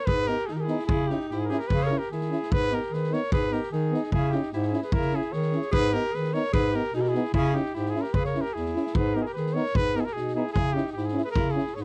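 A warm, up-front cornet carries the melody from the very start, with a raspy, growling alto saxophone adding a jazz-tinged second line, giving this Balkan brass band excerpt a restless, virtuosic energy in a brisk two-beat metre. A mellow bass clarinet holds down the bass and a street-band drum kit drives things with a boomy kick and medium-tuned snare, while two clear euphoniums, one distant and roomy and the other gentle with light vibrato, fill in the accompaniment from 0.3 seconds. The same phrase is played twice over chords alternating between G#m and C#m, captured in a dry, close, 1970s-style studio sound with a faint mains hum.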